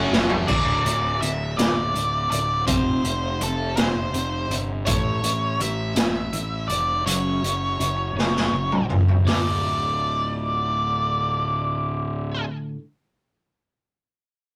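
A rough rehearsal-room sound with tube saturation and light reverb gives this cathartic, angsty slice of quiet-loud alternative rock its raw edge, moving in a lumbering 6/8. In the opening half-second, a barely audible mellow tonewheel organ with slow rotary swirl holds chords beneath a brief burst of riffing from two bright distorted electric guitars and a very quiet, double-tracked sludgy guitar, while the drums play a fill. From 0.5 seconds, a dark, octave-fuzz lead guitar carries the melody up front with slapback echo. Alongside it, a twangy, compressed twelve-string electric guitar rings out clean arpeggios. Underneath, a fuzzed-out, overdriven picked bass anchors the low end, and a gritty garage drum kit with a boomy kick, medium-tuned snare and rolled-off top pushes forward until a second fill leads to a drumless passage at 9.3 seconds, where bass, lead and twelve-string carry on over a D minor chord.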